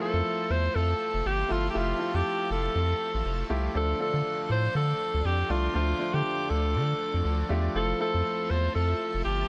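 Lightly reverberant, this nostalgic, dramatic pop excerpt moves at 120 BPM in 4/4 with a gentle swing, cut from a longer piece and resting on Fmaj7 before shifting to Dm7 at 3.7 seconds and back to Fmaj7 at 7.7 seconds. A bright, up-front alto saxophone carries the melody with light vibrato and a digital delay, over an intimate, polished concert grand piano whose action noise is audible, and a deep, round analog bass that sits dark and forward from 0.1 seconds. Behind them, a double-tracked overdriven electric guitar adds picked accompaniment through a lush chorus, while a vintage full-ensemble string machine holds sawtooth chords with a sub octave, slow attack and ensemble chorus.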